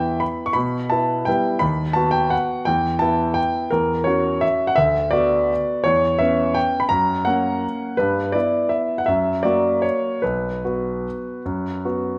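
A solo concert grand piano opens this classical waltz in B minor, its tone clear and intimate, with the noise of its action audible beneath the notes. The mood is wistful and elegant, moving in 3/4 at roughly 145 to 178 BPM with a rubato feel that lets the pulse breathe. The harmony opens on E minor, turns through F#7 and B minor colours, and settles on a bare B chord at 10.2 seconds. The piano sits up front, polished and present, reaching from deep bass notes up into its high treble, and its long sustain blooms into a moderate recital hall reverb. The passage is cut from a longer piece and runs about 12 seconds.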